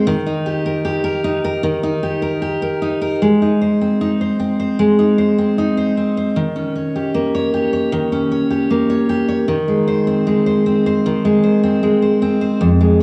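A steady, straight 4/4 pulse at 77 BPM carries this heartfelt, tender pop fragment in Ab major, tuned slightly sharp to A4 = 441 Hz. A lone picked steel-string acoustic guitar with a full-bodied jumbo tone sits up front, with audible finger squeak and an analog delay, ranging from F2 to Db5 as it moves through Eb, Ab, Eb7 and Ab/Eb, shifting into a new section at 3.2 seconds. A lush hall reverb blooms around the intimate cassette home recording, whose small-room ambience lends it a homespun character.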